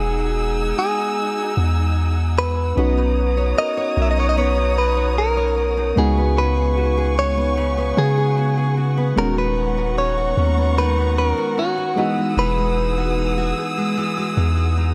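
A deep, sine-toned 808-style bass sits up front in this smooth, dreamy contemporary R&B excerpt, its long notes striking fast and then decaying beneath a slow, straight 4/4 pulse. Above it, a clean, direct-recorded electric guitar carries the melody with a bright, compressed, picked tone trailed by digital delay. A mellow FM electric piano fills in soft, round chords with a faint noise layer, colored by chorus and phaser, while a dark studio string section holds sustained chords with expressive vibrato and portamento. At 2.8 seconds a fingerpicked nylon-string guitar joins with classical-style arpeggios, its own digital delay adding shimmer. The harmony drifts from Emaj9 through Bmaj9, C#7sus4 and G#m11/D# before settling back on Emaj9, all wrapped in a light studio reverb.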